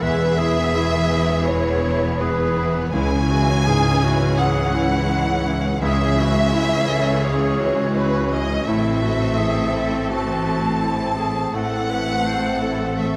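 Cinematic and hopeful yet tender, this rubato excerpt carries a dark, woody violin-section melody with vibrato and a soft attack over a clear solo clarinet, an airy flute section and a lush second violin section, while a background grand piano, a portamento-tinged viola section, a mellow French horn section, a very quiet ringing harp, and a bowed cello and double bass foundation fill out the sound in a moderate concert hall reverb, with the harmony moving from E to C#m at 2.9 seconds and to Am at 8.7 seconds.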